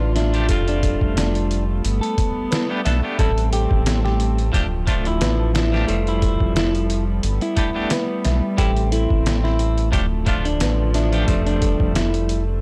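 Dark and smoky, this trip hop excerpt moves with a slight swing in 4/4, cycling through a moody Fadd9, Gadd9, Am7, Dm progression. A semi-hollow electric guitar carries the melody in a dark, fingered, hollow-body tone, roughened with 12-bit sampler grit and trailed by dub echo. Beneath it, a chamber string section holds sustained chords with a nasal, reedy gut-string character, while a clean electric guitar enters at 0.3 seconds with bright, twangy picked accompaniment coloured by tremolo, sampler grit and tape echo. A delicate music box tinkles arpeggios through tape echo in the background, and a deep, round analog bass sits up front with a fast attack and long sustain. The sampler-style drum kit comes in at 0.2 seconds, compressed and pitched down with a thumpy kick and medium-tuned snare, all set in studio reverb within a dry, gritty hardware sound touched by transformer saturation.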